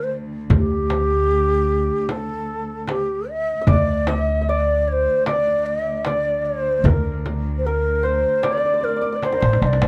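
Heard in a small, moderately reverberant room, this longing, melancholic Persian modal ensemble piece sets an airy, vibrato-rich ney melody up front over a dark, bowed cello section drone and a woody, thumpy pizzicato upright bass, with a tight, vintage-toned tombak and, in the background, a soft-handed frame drum, while a shimmering hammered santur enters as a second line at 3.6 seconds and a drum fill arrives at 9.2 seconds.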